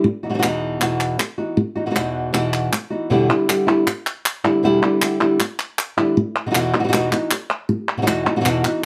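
Flamenco in E minor at 157 BPM, passionate and dramatic, with a fingerpicked flamenco guitar carrying the melody across a range of E2 to F#4 over chords moving from B/E to Em7 and back. Crisp palmas hand claps join at 0.4 seconds, close and dry, while the guitar's warm, acoustic tone sits up front with audible finger squeak. Close, detailed microphones and light reverb give this short passage, cut from a longer piece, an intimate presence.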